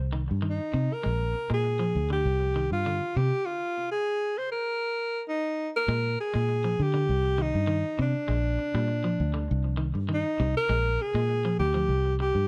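A breathy, close-miked alto saxophone carries the melody up front with a soft, whispered attack and a touch of plate reverb, over a round, foam-muted fingered electric bass in this driving, hypnotic afrobeat excerpt at 100 BPM in Bb mixolydian. Alongside them, a slightly broken-up electric guitar picks twangy, scooped arpeggios through tape echo, sitting lower in the mix. The harmony cycles between Cm and Bb7 in a small, moderately reverberant room, with a stop from 3.5 to 5.9 seconds before the second section resumes the vamp.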